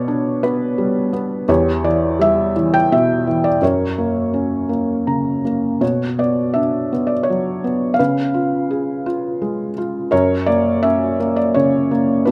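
A rubato 3/4 pulse around 84 BPM carries this bittersweet, moody excerpt of lyrical classical solo piano, where a soft, intimate felt-muted upright sits up front with its action noise audible, moving from G/B through Em and F# to Bmadd9 after a brief fill at 4.7 seconds, then on to C#7 and back to F#, heard through close, detailed microphones in a moderate recital-hall reverb.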